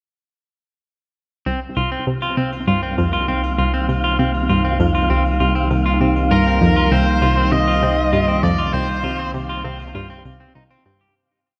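An overdriven, up-front lead guitar sings arching motif phrases from 6.3 to 9.3 seconds in this mysterious, expansive ambient space music, sequencer-driven at 99 BPM in C minor, over a Cm7 bed of a detuned, resonant sweeping pad, a twangy clean electric guitar cycling a 3-step arpeggio, a round analog pluck repeating a 6-step riff (both loops drifting against the bar), a deep sine sub bass holding the root, and a breathy, wind-like tuned noise texture sustaining a high note in the background, the whole set in a lush hall reverb.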